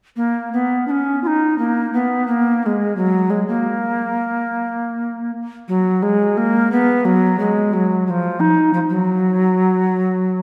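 A resonant church or concert hall surrounds this brief passage, its wet reverb lingering after each note of a single bass recorder placed up front. The piece is a grave, introspective baroque-style fantasia for the unaccompanied instrument, moving in a free rubato around 88 BPM in 4/4, with the recorder's airy, woody tone, vibrato and tongued chiff spanning F3 to F4 from 0.2 to 10.4 seconds. Cut from a longer work, it stays in one continuous section throughout.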